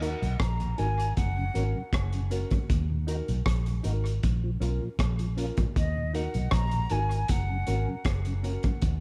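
Serious and meditative, this short roots reggae excerpt in Eb minor moves at 78 BPM in a straight 4/4, cycling through Ebm, Gb and Bbm. A dark, foam-muted fingered electric bass and a crunchy, saturated breakbeat kit with a punchy kick, hi-hat and rim click sit up front, while a mellow tonewheel organ with chorus vibrato and a slow rotary speaker hovers in the background and a reedy electric piano adds clean stabs through spring reverb. Over the top, a distant, airy concert flute carries the tongued, expressive melody with vibrato and dub echo, stopping at 8.1 seconds just before the rhythm section closes the passage at 9.0 seconds.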